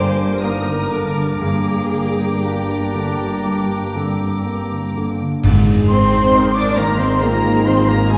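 A lush, vibrato-rich violin section carries the tender melody of this moving, rubato cinematic orchestral cue in Ab lydian at 58-68 BPM, with a second violin line, an airy, hollow flute, a bright oboe that drops out at 5.1 s and a distant clarinet alongside a clear grand piano, a rich viola section, mellow French horn chords, a ringing, thumb-plucked harp in arpeggios, and a bass of rich cellos and intense double basses, until an accent at 5.4 s brings round soft-mallet timpani, bright clash cymbals and concert bass drum as the harmony shifts from Gm to Ab, all heard from further back in a reverberant concert hall with a faint vinyl crackle.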